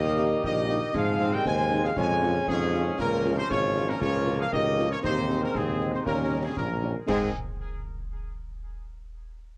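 A spirited, rousing military-style march for wind band in a straight 2/4, heard as a short cut from a longer piece. A dark, tight trumpet section carries the melody up front, sounding distant and roomy with analog delay and plate reverb. Beneath it, a very quiet flute ensemble with pure straight tone and crisp attack, a mellow woodwind section with vibrato, and a warm, very quiet, roomy euphonium share the second line, while a clear, present trombone section holds sustained chords in the background. A warm tuba anchors the bass up front, and a mellow French horn section adds accompaniment from 0.2 seconds, joined at the same moment by close, acoustic concert snare, bass drum and clash cymbals with dark cymbal tone. The whole sounds worn, like old cassette tape with warbly pitch drift, and the harmony closes its phrase on a dominant seventh before resolving home at 7.1 seconds.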